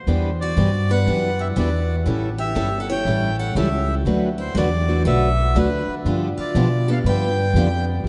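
This swinging, virtuosic jazz manouche fragment is cut from a longer piece and sits in a vast cathedral-like space with a long, wet reverb and a soft, rolled-off top. A dark, smooth, reedy accordion carries the melody over a swung feel and a chord cycle moving from Em9 through A7 and D69 to G7. A thumpy, woody upright bass sits up front, while a fresh-stringed, boxy parlour steel-string guitar comps with audible finger squeak beside a warm plugged-in parlour guitar set back in the background. A bright second steel-string guitar line joins at 0.4 s.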